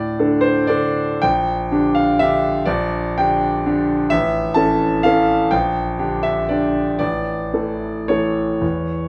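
In a rubato 3/4 lilt drifting between 107 and 134 BPM, this short classical piano waltz excerpt unfolds with a bittersweet, nostalgic mood, its harmony moving from a lone D5 through Gm/Bb and A chords. A brilliant concert grand plays solo from A1 to A5, up front in the sound with deep bass, an open character and long sustain. A moderate large-studio reverb of 1.2 seconds surrounds the instrument.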